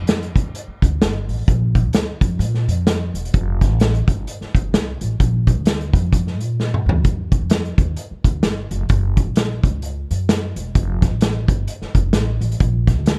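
A dark, dry production with little reverb frames this short excerpt of uptempo 1960s-style soul at 130 BPM in 4/4, swung and danceable. A woody, thumpy upright bass played pizzicato on steel strings, touched with tube saturation, carries the low end, while an up-front vintage kit with a punchy kick, medium-tuned snare, hi-hat and toms sits in a small, pumping room with a rolled-off top. The drums break into a fill at 6.6 seconds.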